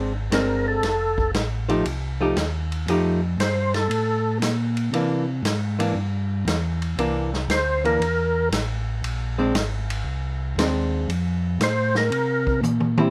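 Soul jazz organ trio at 117 BPM in a swung 4/4, soulful and greasy, cut from a longer piece and set in light reverb. A mellow tonewheel organ carries a round, dark bass line with key click through a slow rotary speaker, while a clean, picked hollow-body archtop guitar sits up front in accompaniment over Bb9, F9 and C9 harmony. A percussive, lightly overdriven second tonewheel organ with chorus vibrato plays melody phrases, and the vintage drum kit enters at 0.3 seconds with a punchy kick and rolled-off top, closing with a drum fill at 12.6 seconds.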